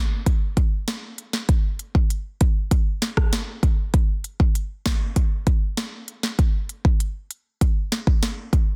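A straight 4/4 dancehall groove at 98 BPM drives this short, sultry and bouncy fragment cut from a longer piece, carried entirely by an electronic afro-pop drum kit that runs from 0.3 to 8.7 seconds. Its deep kick, crisp hi-hats and rim clicks sit up front alongside a sharp snare with soft clipping. The sound is dry, dense and heavily limited in a modern master.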